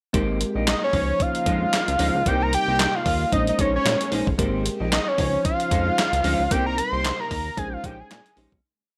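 A light reverb frames this smooth, danceable early-eighties boogie funk piece at 113 BPM: a thumpy, tape-warm 12-bit drum machine with gated reverb plays kick, hi-hat, handclaps and a snare layered with clap, up front in the mix, alongside a dark, fat chorused synth bass line with syncopation and chromatic approach notes, while a bell-like tine electric piano pushes drop2 chords with grace notes, a clean picked guitar chops sixteenth-note riffs in lush chorus, a very quiet vintage string machine holds mellow sustained chords through an Abmaj9, Dbmaj9, Cm7, Bbm11 cycle, and a nasal, detuned analog lead enters at 0.7 seconds with vibrato-tinged hook phrases before the piece fades out from 6.5 seconds.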